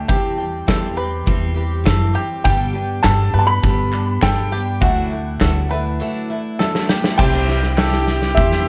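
A straight 4/4 pulse at 101 BPM drives this warm, nostalgic indie folk piece, cut from a longer work, with a loose, gritty drum kit up front and a thumpy, woody pizzicato upright bass, while a dark, slightly detuned upright piano carries the melody over a shimmering, octave-doubled twelve-string guitar and twangy fingerpicked banjo arpeggios, both piano and banjo trailed by analog delay. Crisp group handclaps join in the background from 3.0 seconds. Near the end of a drum fill, a rich, earthy fiddle line with light vibrato enters at 7.1 seconds, and the arrangement builds at 7.2 seconds as a soft felt-muted piano joins, followed briefly by a very quiet jingly tambourine. Light reverb and a worn cassette-tape warble with drifting pitch give the recording its faded, homespun character.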